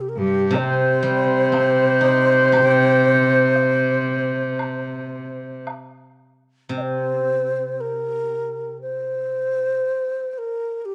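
A breathy low xiao leads this graceful, wistful fragment of Chinese traditional chamber music, its end-blown bamboo tone soft in attack, touched with vibrato and sitting up front as it carries an expressive melody through the whole passage in a free, rubato pulse. Beneath it, a steel-string zither played with fingerpicks rings out silvery accompaniment until it stops at 9.8 seconds. A mellow large dizi, pure and straight-toned with a crisp, chiffy attack and the buzz of its membrane, adds a distant second line, alongside an earthy, nasal bowed cello with light vibrato. Both second lines fall away at 5.7 seconds, and a woodblock taps quietly in the background through the opening half. Light reverb and a dark production give the piece a hushed, intimate glow.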